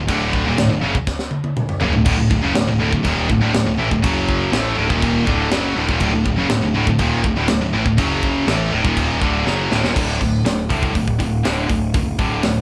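Heavy metal at 121 BPM in a straight 4/4, this short excerpt cut from a longer piece feels heavy and aggressive, built on a D chord that shifts briefly to F#5 at 4.0 and 8.0 seconds before settling on D5 when a new section begins at 10.0 seconds. Three distorted, picked electric guitars drive the riff in the same low register, with a tight, bright guitar up front and two high-gain guitars behind it, one scooped and the other double-tracked. The double-tracked guitar drops out at 9.9 seconds, leaving the other two to carry the closing section. Underneath, a picked electric bass adds a growly fuzz and overdrive from the background. An acoustic metal drum kit sits up front with a high-tuned snare, a tight kick, crash, hi-hat and toms, its sound mid-forward with a rolled-off top, and it plays fills at 1.1 and 9.5 seconds. The band sounds like it is playing live together in one room, with a light reverb.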